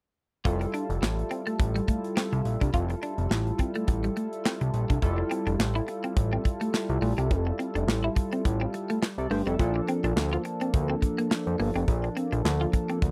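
Danceable and feel-good, this excerpt of early-eighties boogie funk moves at a swung sixteenth-note groove in 4/4. A modern studio drum kit sits up front with handclaps, hi-hat, a tight kick and a medium-tuned snare, its acoustic sound airy and polished. Beneath it, a fat analog bass built from detuned sawtooth and square waves carries the low end, its thick tone shaped by a filter sweep and a moving notch. A chorused polysynth supplies glossy, retro chords of pulse and sawtooth waves with pulse-width modulation, opening on an Fmaj9 at 0.5 seconds, while an electric guitar at the edge of break-up plays a bright, twangy picked riff through analog chorus. The recording is dry and close in a 1970s studio manner, and the arrangement shifts into a second section at 5.0 seconds, with all four parts playing through to the end.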